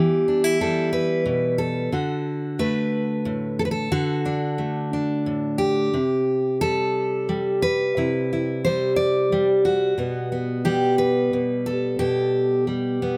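Flowing in a rubato 6/8 at 60 BPM, this peaceful, hopeful folk excerpt in G major features a solo fingerpicked steel-string acoustic guitar, bright and full-bodied with a jumbo character, placed up front in light reverb as it moves through Em, D, Cadd9 and Gadd9/B across 13.2 seconds, spanning A2 to D5.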